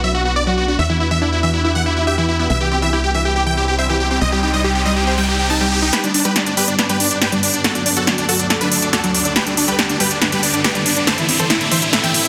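Driving straight 4/4 uplifting trance, soaring and euphoric, where a huge detuned supersaw lead carries the melody over a shimmering, ethereal pad and a round analog pluck arpeggio with dub echo, while a tight sequencer bass drives until 5.9 s, when an overdriven big-room drum kit with a punchy snare and crisp hats takes over amid a background riser and filter sweeps in a dense, heavily limited master.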